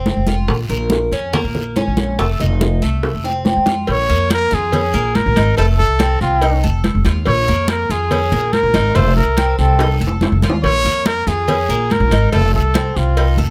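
A straight 4/4 Cuban son and guajira groove at 142 BPM in Bb minor moves between Bbm and F7, with thumpy, growly pizzicato upright bass up front, ringing medium-tuned congas, tight high-tuned bongos and cowbell, a raspy guiro in the background, and a metallic, double-strung Cuban tres picking arpeggios. After a drum fill at 3.0 seconds, a breathy, whispered trumpet enters at 3.9 seconds with a mellow, intimate solo melody played with vibrato, and another fill arrives at 9.8 seconds. The sultry mood is captured with close, detailed microphones and little reverb in this short cut from a longer piece.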